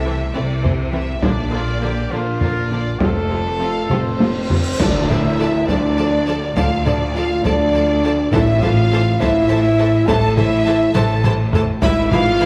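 Steeped in the wet reverb of a scoring stage, this epic, dark orchestral film-score excerpt moves at a stately 68 BPM in a straight 6/8. Strings carry the weight: a lush violin section sings the melody with vibrato and portamento from a distance, while a second, more intense violin line, smooth violas, focused cellos and rich double basses fill in the harmony and low end behind it. Mellow French horns hold sustained chords, and a soft-attacked trumpet section adds stabs only in the opening seconds. A vintage-sounding, band-limited taiko ensemble struck with hard sticks drives the rhythm, with a bright cymbal swell and tam-tam rising behind it. An airy flute section enters at 3.6 s with a second line, and at 4.8 s a huge impact and a band accent open the next section as the harmony turns toward D minor. Articulate timpani on hard mallets punctuate the passage at 8.3 s before a final drum fill, and the excerpt closes on an E/G# chord, cut from a longer piece.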